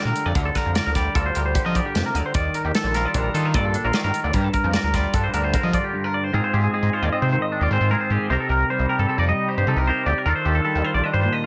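A light reverb and an up-front mix frame this short cut from a longer math rock and midwest emo piece, wistful and intricate, moving at 151 BPM in 5/4 with a straight feel in G minor, tuned to A4 = 439 Hz. Two twangy electric guitars run throughout: one plays a clean, fingered accompaniment from G2 to Bb4, softened by analog chorus, while the other picks bright arpeggios higher up, between G4 and Eb5. Underneath, a gritty, aggressive synth bass mixes sawtooth, oscillator sync and wave-folded tones with a resonant filter pluck, a fast attack and saturated sustain, ranging from Bb1 to F3. An acoustic studio kit with a punchy kick, medium-tuned snare and hi-hat drives the opening section, then drops out at 5.8 seconds for a short break before the second section begins at 6.3 seconds. The harmony drifts from Gm7/D through Ebmaj9#11 and Gm7, then into Ab6 and Cm9 before returning to Ebmaj9#11.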